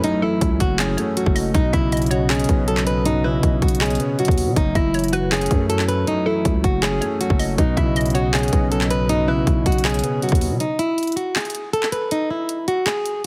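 Hip hop trap at 159 BPM in a half-time feel, brooding and eerie, built on F#m7 and Badd9 chords, with a fingerpicked flamenco guitar melody up front carrying tape echo over a dark, intimate grand piano with audible action noise, a very quiet flute-like pad and a bouncy, warbling square pluck with chorus sitting in the background. Overdriven trap drums with a hard-clipped kick, bright hats and handclaps drive the groove alongside a growling, buzzy 808-style bass. At 10.6 s the harmony drops out for a break where the guitar and drums carry on until the cut, all in a dry, heavily compressed radio-like sound.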